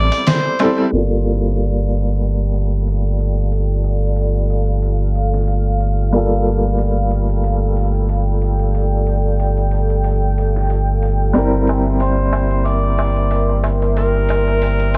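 A deep, round sine sub bass sits up front in this hypnotic, melancholic trip hop excerpt, beneath a brilliant, woody upright piano with tremolo, tape echo and a filter sweep from 0.9 seconds, a muffled, pitched-down sampler-style drum kit of overdriven hi-hat and snare, a crisp metal-shelled darbuka in the background, a moody detuned sawtooth analog pad with chorus arriving at 2.3 seconds, and a mellow harmonica with scooped notes and dub echo that returns at 12.0 seconds, over a bed of worn cassette warble and vinyl crackle.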